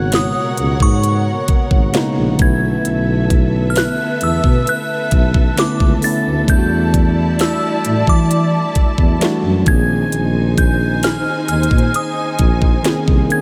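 A breathy, darkly scooped tuba carries the bass with light vibrato and a close, jazz-inflected presence. Alongside it, up-front trap drums with a knocking kick, sharp snare and crisp hats drive this moody, sensual contemporary R&B excerpt at 66 BPM in 4/4. A clean tine electric piano and a lush, woody string section hold the minor-eleventh harmony from G#m11 through A#m11, while a glassy FM synth bell with chorus and delay rings out the high melody, all inside a light reverb.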